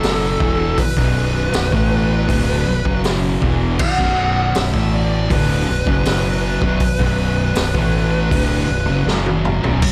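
A lightly reverberant studio sound frames this heavy, brooding stoner and doom metal excerpt in B minor at 80 BPM, where a compressed, dark fuzz lead guitar carries the melody until 9.0 seconds over riffs from a bright, double-tracked fuzz guitar and two thick fuzz guitars set low in the mix, a growling fingered electric bass with tube-saturated overdrive, a soft, flute-like tonewheel organ holding very quiet chords through a rotary speaker with audible key click, and an up-front, gritty garage drum kit with a punchy kick and high-tuned snare that plays a fill from 9.1 seconds.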